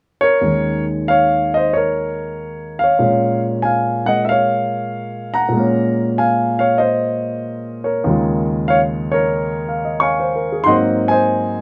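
A dark, polished sound with light reverb places the baby grand piano present and up front, playing alone from 0.2 to 11.6 seconds in this short cut from a longer piece. It's relaxed, warm solo jazz at around 94 BPM in 4/4, swung on the eighths and phrased with a loose rubato across a range from Eb2 to Db6. The harmony moves from Eb7sus4 through Bbm9 and Eb9sus4 before settling on Ab9 at 10.7 seconds.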